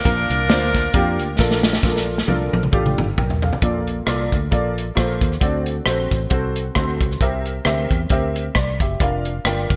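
This short excerpt from a longer uptempo gospel piece opens with a bright, jazz-style saxophone section stating a brief melody with vibrato and a touch of delay, heard only until 1.4 seconds, alongside a clear, worn concert grand piano whose deep bass and short sustain sit up front under a gentle analog chorus. At 134 BPM in Bb major with a swung eighth-note feel, the mood is uplifting and jubilant. A fingered electric bass, direct, foam-muted and punchy, anchors the low end, while a soul drum kit with a tight kick, medium-tuned snare, rim clicks, hi-hat and toms carries a rolled-off top and gated reverb, with a roomy, distant character despite sitting forward in the balance. Drum fills push the music onward from 1.4 seconds, and the piano takes a fill of its own around 6.5 seconds as the harmony moves from Bbmaj7 through D7 and C7 before settling on Bb/F. The whole production has a bright 1980s-style digital sheen, with light small-room reverb.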